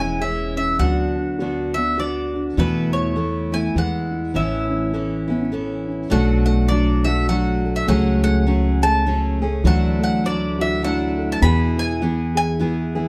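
A full-bodied, up-front steel-string guitar, with audible finger squeak, anchors this hopeful, gentle folk excerpt in a swung waltz time, alongside a growly, woody pizzicato upright bass. Above them a bowl-back mandolin carries the melody with its double strings. A mellow, intimate, felt-muted upright piano sits in the background with arpeggios and audible action noise, and close microphones and light reverb give the recording a detailed sound as it moves from its opening section to a second one at 6.1 seconds.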